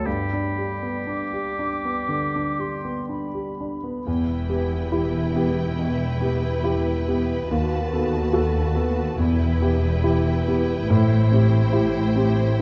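Classical romantic music for piano and orchestra, lyrical and lush, unfolding with rubato in a slow four. An up-front, worn concert grand carries the melody throughout, opening over a pure, distant flute, a vintage-sounding oboe and a mellow bassoon that fall away by 4.0 s. At 4.1 s the music turns to E minor as a bowed string section enters with vibrato, with intense, faraway violins high above, expressive second violins, smooth violas, focused double basses and soft-edged cellos, all bathed in a dark concert-hall reverb with a faint mains hum.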